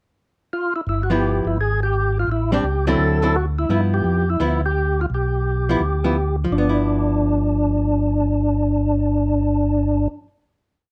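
A swung eighth-note feel in 4/4 drives this short, soulful and greasy jazz piece, which opens with a brief pickup bar before settling into a single section and a closing chord. The melody comes from a percussive tonewheel organ, fat and lightly overdriven, with second-harmonic percussion, key click, chorus vibrato and a slow rotary speaker; it enters at 0.5 seconds and builds its line from short motifs shaped into sentence-like phrases. Underneath, a second tonewheel organ carries the bass in a two-feel, its tone round, dark and clean, also colored by chorus vibrato and a slow rotary speaker. A miked and amplified hollow-body archtop guitar joins at 1.1 seconds with picked, compressed, syncopated comping in three- and four-note chord shapes, and it rings on until 10.5 seconds, just past the organs. All three parts sit up front in a close, detailed recording with light reverb, and the harmony moves through G6, Am7 and D9 before returning to G6.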